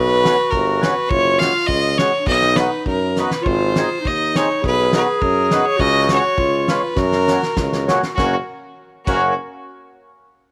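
A rubato 2/4 lilt at 102 BPM drives this bouncy, jolly alpine dance-band excerpt in F# major, where a biting, up-front fiddle with light vibrato carries the melody over a distant, roomy clarinet second line, a vintage-toned tuba bass and a reedy, full accordion accompaniment that enters at 0.2 seconds, while a loose acoustic drum kit with dark cymbals, a fat snare and a tight kick adds fills at 3.2 and 7.0 seconds, the band sitting in a small room with light reverb.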